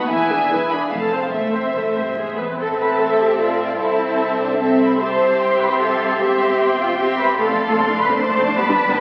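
Quick classical-period movement for string orchestra in 3/4 at 150 BPM in A minor, graceful and cheerful in mood, cut from a longer piece and heard through the crackle of a very old 78 rpm record with a wet scoring-stage reverb. A smooth, even violin section carries the melody alongside a focused second violin line, while a lush viola section sits up front in the accompaniment and a dark cello section with soft attacks and expressive portamento shares the bass with a faint double bass section. The harmony moves from E7 and F toward E before the second section settles on Am, passes through C and closes the passage on Dm7/F.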